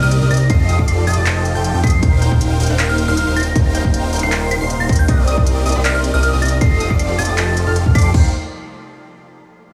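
A small digital room frames this euphoric, playful future bass drop, cut from a longer piece and moving at 157 BPM in 4/4 with a half-time feel in Eb lydian. A fat, thick analog bass sits up front with detuned sawtooth and square tones and a moving notch filter, while huge, lush supersaw chords carry the riff through a bright phaser. Above them, a glassy FM synth bell plays the crystalline, decaying melody with chorus and digital delay. A detuned, wave-folded unison pluck spins arpeggios in the background, and an airy, breathy pad holds soft, nasal sustained chords with a slow attack and long release. All the synth parts share sidechain pumping. The trap kit brings crisp hats, handclaps and crash cymbal with a tape-tinged finish, a punchy, overdriven electronic kick enters at 0.5 seconds, and the harmony moves through F7, Eb6, Cm7 and back before the drop gives way at 8.1 seconds.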